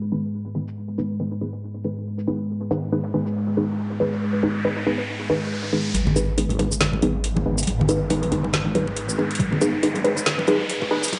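Brooding and dark, this deep dubstep excerpt moves at 139 BPM in a half-time feel with a light swing on the sixteenths, sitting on a single G# minor chord throughout. A deep, moody ambient pad of detuned sawtooth and sine layers holds sustained chords from the very start, its slow attack and long release softened by chorus and its own reverb while a filter sweep shapes it through the first 5.9 seconds. Muted, detuned dub chord stabs sit up front almost at once, their short plucked decay colored by phaser, lush chorus, cassette tape grit and dub echo, and a garage drum kit of woody snare, metallic hats and shaker comes in at 0.7 seconds, overdriven and darkened by low-pass filtering. An electronic riser creeps in beneath, and at 5.9 seconds the build-up begins as a heavy, saturated wobble bass on G#1 arrives alongside close, dry congas played with hard hands, while filter sweeps move across the stabs. 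A knocking, overdriven electronic kick joins late, and the whole production stays shadowy and rounded in a moderate digital room ambience.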